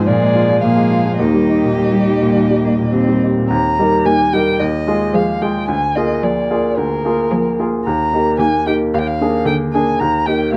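In a flexible, rubato 4/4 running at roughly 102 to 113 BPM, this quick classical-period movement for piano quintet in Eb major has a dramatic, urgent mood, tuned slightly low at A4 = 438 Hz. A clear, natural baby grand piano sits up front with the accompaniment, while a single con sordino violin carries the melody with vibrato, portamento and a smooth, veiled top. A second muted violin plays a close inner line, and a cello with soft attack and gliding portamento gives a distant, shadowy second line from the background. A muted viola adds background accompaniment with light vibrato, so that the bowed strings share a dusky, subdued colour against the piano's brighter tone. All five parts play together throughout this short cut from a longer piece, with a new section arriving at 3.5 s and the harmony circling between Eb and Bb7, passing through Fm7 over an Eb bass. Moderate studio reverb and a dark, warm production round out the sound.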